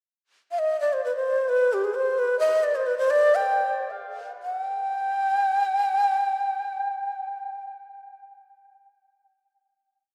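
A breathy, mellow shakuhachi enters alone at 0.5 s on a short pickup, then carries a soulful, bittersweet klezmer melody in straight 2/4 between G4 and G5, tuned slightly sharp at A4 = 441 Hz. Its end-blown bamboo tone is up front, with tongued, chiffy attacks, expressive vibrato and ornaments decorating the modal line, all colored by analog delay. The tempo, ranging from 98 to 132 BPM, slows from 2.4 s into a final held note at 4.4 s, and the whole piece is soaked in a lush hall reverb with a 2.8-second tail that gives it a dreamy sound.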